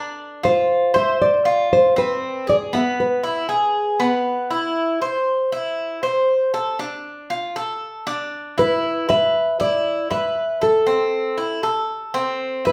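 Recorded live in one room with a wet large-studio reverb, this sultry, danceable Latin excerpt in A minor at 118 BPM sets an up-front, thumb-plucked classical nylon-string guitar melody, finger squeaks and all, over the metallic, double-strung arpeggios of a Cuban tres that runs throughout, while the guitar falls silent at 4.5 seconds and returns at 8.6 seconds.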